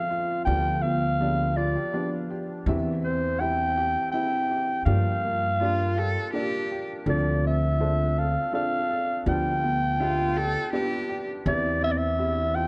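This acoustic folk-pop ballad in 3/4 feels heartbroken and intimate, a short excerpt cut from a longer piece. A raspy, growling clarinet carries the melody up front in a vintage jazz style, its scooped notes and light vibrato trailing a tape echo. Beneath it, an upright piano gives a woody, boxy accompaniment with short sustain, while a second, felt-muted upright piano plays soft arpeggios with its action noise clearly audible. A thumpy pizzicato upright bass on steel strings enters at 0.5 s, and a single bowed cello adds a focused, smooth second line with vibrato from 5.6 s to 11.2 s. The harmony moves from G7/D and C/E through Gm7 and Dm7 before returning, all heard through close, detailed microphones set in a moderate concert hall reverb.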